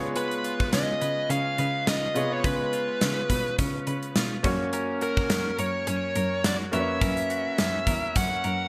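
Dramatic and moody, this short cut from a longer 1980s-style pop piece moves at 105 BPM in 4/4 with a light sixteenth-note swing, shifting from C#7 to F# at 4.4 seconds. A dark, fuzz-distorted lead guitar with delay carries the melody up front over a punchy gated drum kit with a medium-tuned snare, while a clear grand piano with audible action noise plays the accompaniment and a twangy, direct-recorded clean electric guitar with subtle chorus and delay picks a riff. A single bowed cello supplies a rich, smooth bass line with vibrato, and the bright digital production is set in a lush hall reverb.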